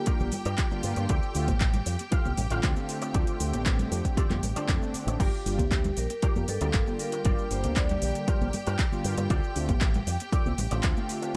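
A short groovy, sensual nu-disco excerpt in G minor at 117 BPM opens on a ringing vibraphone melody with dub echo, mellow sawtooth synth brass with chorus and lush bowed strings with sidechain pumping, then quickly adds a punchy, overdriven electronic kick up front, a pop drum kit with metallic hats, handclaps, shaker and crash, high-tuned congas in the background, a warm fingered bass through an envelope filter and a twangy, bright guitar riff through its own envelope filter, with the vibraphone returning at 5.2 seconds over dry Gm7 and Dm7 chords.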